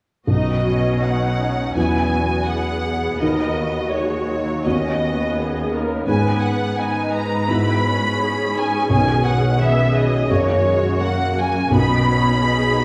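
Uplifting and hopeful, this cinematic, emotional film score moves at 84 BPM in 4/4 with a rubato feel in B major, cut from a longer piece, with a rich, smooth violin section carrying the melody up front over a lush viola section and a felt-muted upright piano whose mellow, intimate tone comes with audible action noise. A thumb-plucked concert harp adds ringing arpeggios in the background while a focused cello section holds the bass, all the bowed strings sounding with vibrato. The harmony moves from Badd9 through D#m and G#m to F#add9 before settling on Badd9 at 11.7 seconds, and a recital hall reverb places the ensemble further back in the room.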